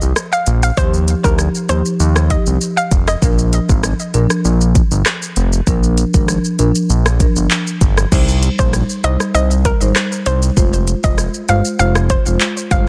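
Dense, heavily limited and bathed in digital ambience, this sultry, tough dancehall cut at 98 BPM in C minor rides a fat, nasal sawtooth bass and an up-front electronic afro-pop kit of deep kick, crisp hats, handclaps, rim click, shaker and crash, while a woody, mellow soft-mallet marimba enters at 0.8 seconds and a hollow, bouncy square-wave pluck with chorus and digital delay sounds from 0.3 to 3.2 seconds and returns at 8.6 seconds, all over chords moving from Ebadd9 and Bb to Cm and Fm.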